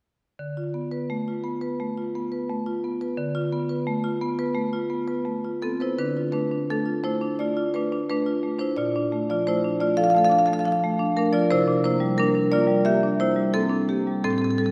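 Rubato phrasing stretches a 4/4 pulse of about 87 BPM in this hypnotic, flowing contemporary classical piece for solo marimba in D minor, tuned to A4 = 439 Hz and cut from a longer work, where the marimba, struck with medium hard mallets and sounding warm and up front across a range from A2 to F5, opens on Dm6, shifts into a second section at 6.0 seconds, and moves to Bbmaj7 at 8.8 seconds and C9 at 11.5 seconds, bathed in the wet, lingering reverb of a church or concert hall.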